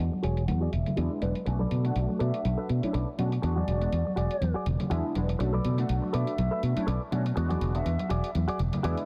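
A swung sixteenth-note groove in 4/4 drives this short cut from a longer filtered disco house track, funky and nostalgic in mood, with the whole clip passing through a filter sweep. Up front, a fingered electric bass sits direct and amped, while a punchy sawtooth polysynth comp, detuned and chorused with a moving notch and filter pluck, vamps between E9 and Bm7. A bright, twangy clean electric guitar, recorded direct and compressed with vintage 12-bit sampler grit, opens with a fill that lasts until 1.5 seconds before settling into its riff. Ringing egg shaker and soft-handed congas stay in the background, and a faint electronic hi-hat adds a tape-warm analog tick. At 2.2 seconds a pure, straight-toned concert flute with a crisp attack enters, carrying a small melody through a digital delay until 8.1 seconds, all set in light small-room reverb under a dense, heavily limited master.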